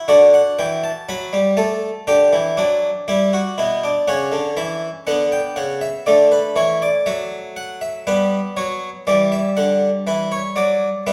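A lively, joyful baroque-style fugue in three parts for solo harpsichord, heard as a short cut from a longer piece, moving at a steady 60 BPM in straight 4/4. The Flemish-style harpsichord sits up front with an airy, brilliant, plucked tone and doubled octave strings, ranging from B2 up to B5 as the harmony moves from D through G and darker diminished colours, shifting to a new section at 8.1 seconds. A generous recital-hall reverb surrounds the instrument with a 1.4-second tail.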